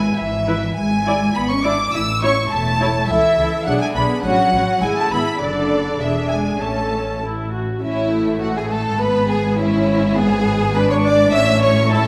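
A quick classical-period movement for string orchestra in A major, urgent and restless, moving at 103 BPM in a straight 2/4 and cut from a longer piece. The first violins carry a focused, vibrato-laden melody with a smooth top, while the second violins, close and expressive, join at 0.2 s with a second line, and distant, even violas fill in the accompaniment beneath. Cellos with soft attacks and touches of portamento share the bass with rich double basses, and the ensemble sits in the wet reverb of a scoring stage.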